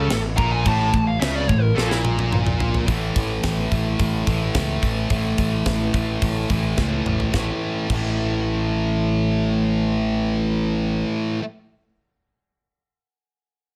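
Heavy metal excerpt with an epic, aggressive mood, opening on a dark, high-gain lead guitar solo with delay that stops at 2.0 s over a dense wall of distorted rhythm riffs (a bright compressed guitar, a heavy high-gain guitar, and a double-tracked background guitar that drops out at 2.9 s), a growling overdriven bass, and a tight acoustic drum kit with bright cymbals, a high-tuned snare, and fills at 1.8 s and 6.8 s, all in a dry mix.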